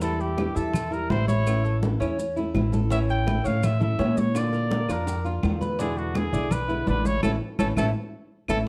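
A straight 4/4 pulse at 166 BPM drives this danceable, nostalgic fragment of Cuban son and guajira. Bright, damped congas play alongside tight, high-tuned bongos sitting distant in the background, with grainy maracas behind them and dry claves joining at 0.4 s. Up front, a thumpy pizzicato upright bass on steel strings anchors the harmony as it moves from Edim to A, Bb, E7 and back to A. The warm trumpet carries the melody as a punchy, vintage-toned soloist with vibrato, while a fingerpicked flamenco guitar on old strings supplies woody accompaniment and a Cuban tres adds metallic, double-string arpeggios. A drum fill arrives at 1.8 s, the band hits an accent from 7.2 s to the end of the cut, and the whole dark production sits in a moderate large-studio reverb.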